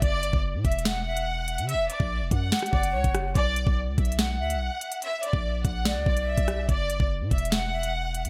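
A half-time drill groove at 144 BPM drives this dark, ominous hip hop excerpt in B harmonic minor, with an electronic kit of knocking kick, sharp snare, rim click and crisp hats set up front in gated reverb, over a deep, sine-like 808-style bass that sustains long and decays. A lush, bright violin section carries the melody with intense vibrato, and a breathy concert flute enters at 0.9 s as a close-miked second line in straight tone, trailed by digital delay. The harmony moves from a chordless opening to B minor at 3.4 s, framed by light small-room ambience and bright 1980s-style digital production.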